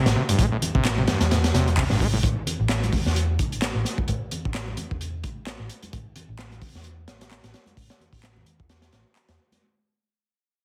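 A crunchy, saturated breakbeat kit with a punchy kick and high-tuned snare sits up front in this gritty, funky breakbeat cut in A minor at 130 BPM, with swung 16ths. A squelchy, resonant acid bass riff with tape echo opens the piece and stops at 2.2 seconds, while a dark, round hollow-body picked electric bass carries the low end through a low-pass filter sweep, joined by layered electronic handclaps and warm congas in the background. The fragment fades out throughout, with a heavily compressed, radio-like sound and light small-room reverb.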